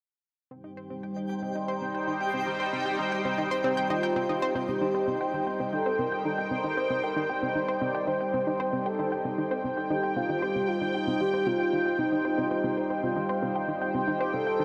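An analog pluck riff, round and sawtooth-edged with chorus and analog delay, fades in from 0.5 s beside a bright, evolving, detuned resonant pad sustaining a C minor chord up front, setting a hypnotic, expansive mood for this ambient, sequencer-driven space music at 115 BPM in C dorian, while a twinkling, sparkling granular texture glints in the background until 4.7 s and a mellow, horn-like synth lead with vibrato carries the melody from 3.9 s, every part bathed in shimmer reverb within a huge, wet ambient space.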